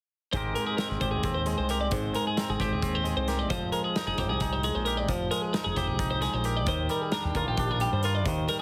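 Math rock and midwest emo in an intricate, bright 7/8, this short clip moves through Abmaj9, Fm9 and Ebmaj9 chords under light reverb and a heavily compressed, radio-like finish. A twangy electric guitar carrying the accompaniment and a twelve-string electric guitar spinning high arpeggios are both clean, picked, compressed and up front. Beneath them a growling, overdriven fingered bass drives the low end, and a loose indie drum kit of hi-hat, punchy kick and medium-tuned snare breathes in a small, pumping room.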